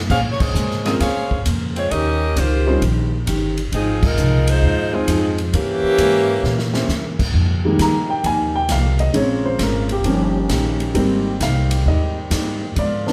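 A woody, thumpy upright bass opens this brassy, dramatic big band swing cut in F minor at 133 BPM. It is joined at once by a bright, close-miked saxophone section with vibrato carrying the melody up front, a full-bodied picked steel-string acoustic guitar in the background, and a polished, airy drum kit with a punchy kick, while a warm baby grand piano enters at 0.9 seconds and a drum fill at 6.4 seconds ends the opening section. From 7.3 seconds the natural-toned piano takes an up-front solo as a trombone section with light vibrato holds sustained chords in the background, the band playing live in one room under wet studio reverb.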